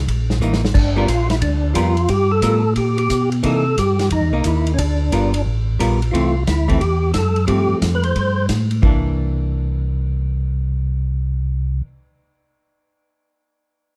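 A swinging 4/4 groove drives this greasy soul jazz organ trio fragment, with a vintage acoustic drum kit full of dark cymbals, a punchy kick and a pumping small-room sound, playing an early short fill and dropping out at 8.9 seconds. A mellow, round tonewheel organ carries the bass line through a clean slow rotary speaker and chorus vibrato, while a hollow-body archtop guitar adds picked, clean comping. Up front, a fat, lightly overdriven percussive organ with key click and third-harmonic percussion sings the melody until 8.5 seconds over a progression that moves through Fmaj7 and G9sus4 before settling onto a final C9, all in a light reverb.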